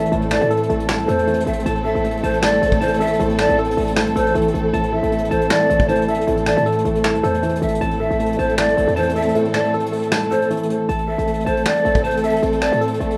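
Breathy cane pan pipes carry a second line over a hard-hitting, menacing trap beat in A minor, moving at 156 BPM with a half-time feel, their soft-attack chiff and vibrato smeared by tape echo and plate reverb, while a worn, slightly out-of-tune tine electric piano spins lightly overdriven arpeggios that sound as if heard through built-in speakers. Dark, lush bowed strings hold sustained chords alongside a felt-muted upright piano whose mellow, intimate accompaniment, audible action noise and all, drops out at 10.9 seconds. A punchy, decaying 808-style bass and a distant, roomy brush kit with snaps, hi-hat, tight kick and medium-tuned snare anchor this rough home-demo fragment, with the kick muted from 9.3 to 10.9 seconds.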